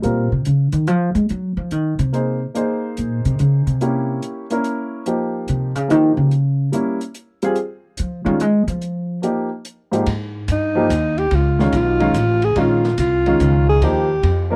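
Sophisticated and relaxed, this small-group swing and bop jazz passage in 3/4 at 144 BPM in Ab major, cut from a longer piece with a dry, close 1970s-style studio sound, opens with a woody, growly pizzicato upright bass solo up front over a natural-sounding baby grand piano and a smooth, quietly mixed drum kit with dark cymbals and a boomy kick, before a breathy, mellow alto saxophone enters at 10.5 s to take the solo.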